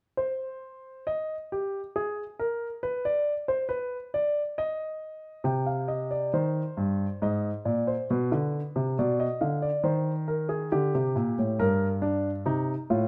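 A concert grand piano opens the recording at 0.2 s, playing alone in a serious, driving baroque-style two-part invention in three-four time. The opening passage carries two lines, and a chord is first heard when the harmony settles on C minor at 5.5 s. From there the music moves through A-flat add nine, B diminished and G minor before returning to C minor near the close at 12.5 s. The piano has a warm, up-front presence with a deep bass and short sustain, and its range reaches from G2 to G5. A moderate reverb from a large studio gives the notes a sense of space around their short decay, and the clip is cut from a longer piece.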